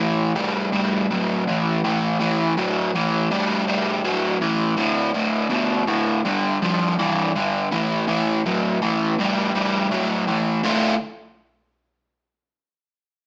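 Gritty and heavy, this rock excerpt at 82 BPM in 4/4 features a lone crunchy overdriven electric guitar, picked and double-tracked up front from 0.0 to 10.9 seconds, moving through power chords on A, D and G before settling on a D minor chord at 10.6 seconds, all heard with moderate large-studio reverb and the sound of a band playing live in one room through a small speaker.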